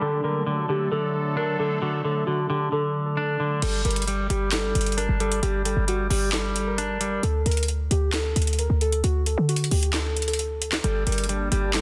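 Eerie and hard-hitting, this half-time trap excerpt in G harmonic minor moves at 133 BPM, opening on muted, felt-like synth keys carrying a soft, dark melody over a clean, hollow-body electric guitar with spring reverb and an airy, detuned pad with a resonant filter sweep through the first 3.6 seconds. At 3.6 seconds a punchy, tight 808-style bass and an up-front trap kit with a sharp snare, metallic hi-hats, handclaps and crash cymbal arrive as the chords shift from D to Gmadd9. The guitar drops out at 7.2 seconds and returns with the bright pad at 10.8 seconds, all within light digital ambience and a dense, heavily limited modern master.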